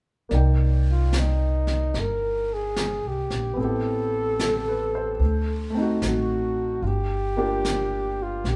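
This smoky, intimate jazz ballad fragment opens at 0.3 s with piano, upright bass and brushed drums entering together in a relaxed, swung feel. The concert grand sounds natural and close, with its action noise audible and a deep low register. Beneath it, the pizzicato bass sits up front with a woody tone, while the kit's high-tuned snare and hi-hat come across dark and smooth, their top end rolled off. At 0.9 s the flugelhorn takes the solo melody, mellow and close-miked, with a soft attack, light vibrato and scooped notes. The harmony moves from Cm9 through Am9 and D7b9 to Gm7, and the band plays live in one room, bathed in a moderate large studio reverb.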